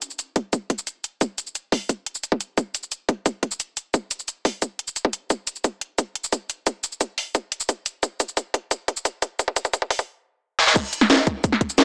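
Filtered and boxy like a small speaker, with light reverb, this short drum and bass clip at 176 BPM feels tense and aggressive. An up-front, overdriven kit of cracking snare, bright hi-hats, shaker and crash cymbal drives the build-up, joined at 0.4 s by a tight, layered electronic kick. A drum fill starting at 5.3 s pushes toward a drop at 10.8 s.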